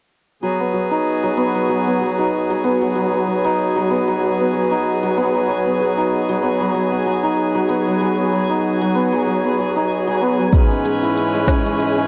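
Folktronica in G# minor at 95 BPM with a light 16th-note swing, this autumnal, intimate passage cut from a longer piece opens at 0.4 seconds on a G#m7 chord, with reedy, close-miked accordion holding full sustained chords beneath shimmering hammered dulcimer arpeggios, which sit up front with a low-pass filter and tape echo. From 1.1 seconds a twinkling granular texture with an octave-up FM sparkle, slow attack and built-in reverb hovers in the background. At 10.5 seconds the harmony shifts to C#m7/G# as a deep, up-front electronic kick drum arrives alongside an electronic shaker and woody snare, all within a dry, close 1970s-style studio sound.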